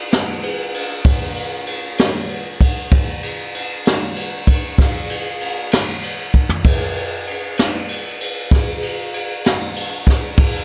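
A slow, straight 12/8 pulse at 64 BPM counted in dotted quarters carries this mournful, brooding blues fragment of a longer piece, played by a lone, up-front acoustic jazz drum kit with brushes in a natural studio room with light reverb, where dark crash and ride cymbals, a high-tuned snare, a boomy kick and toms sound from 0.1 to 10.5 seconds, marked by a brief fill at 6.3 seconds.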